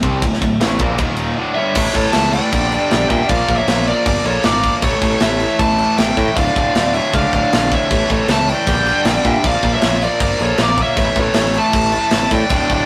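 A rough rehearsal-room recording in a stone room captures a relentless, heavy metal passage at 156 BPM, where an up-front drum kit with a tight kick and medium-tuned snare drives a growly, punchy picked bass beneath three bright rhythm guitars (a very quiet double-tracked overdriven stack, a very quiet high-gain part and a distorted one in the background) churning out the riff, while two dark, distorted lead guitars enter with a melody at 1.5 s and a second line at 1.6 s over chords moving through Dm, A, Gm/Bb and Bb.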